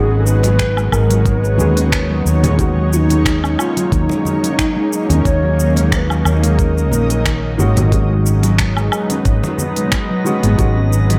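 A dreamy, reverb-soaked mix frames this hypnotic stretch of organic downtempo, where an airy wooden flute with expressive vibrato carries the melody until 7.6 seconds over a cloudy, evolving granular pad, a ringing handpan playing arpeggios, and a soft, boxy felt-muted upright piano tucked in the background. A dark, round fretless bass sits up front and pumps along with the piano and pad, while a crisp-hatted electronic kit of snaps, shaker and woodblock, distant bright congas, and a gritty, thumpy kick fill out the gently swung groove. At 9.1 seconds a faint glassy texture of drifting overtones, touched with chorus, appears for the closing moments.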